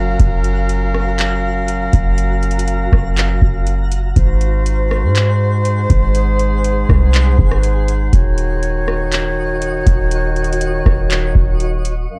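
Atmospheric cloud-rap hip hop at 121 BPM in a half-time feel, blissful and dreamy, this excerpt from a longer piece moves through Gbmaj7, Ab7 and Ebm7 with tuning set at A4 = 436 Hz. A mellow, distant woodwind section holds sustained chords with light vibrato, pumping under sidechain and softened by a low-pass filter, while a clean, boomy sine 808-style bass sits up front with fast-attack, decaying notes. A booming, tape-warm analog drum machine enters at 0.2 s with deep kick, metallic hi-hats, handclaps and rim clicks, and a faint twinkling granular texture adds octave-up FM shimmer with its own reverb, all within a dark, dry production.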